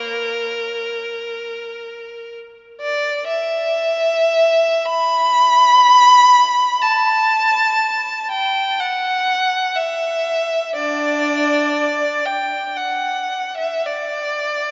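Yearning and meditative, this classical fragment for unaccompanied violin unfolds in free time in E minor, tuned to A4 = 441 Hz. A single bowed violin carries the whole 14.7 seconds, ranging from Bb3 up to B5 with a warm, focused tone and a smooth upper register. Its vibrato lends the expressive lines a singing, searching quality. The instrument sits up front, yet it is bathed in a wet cathedral reverb with a 4.8-second decay that lets each phrase hang in the air. The sound is gently darkened, with nothing above 7.6 kHz, giving the passage a soft, intimate glow.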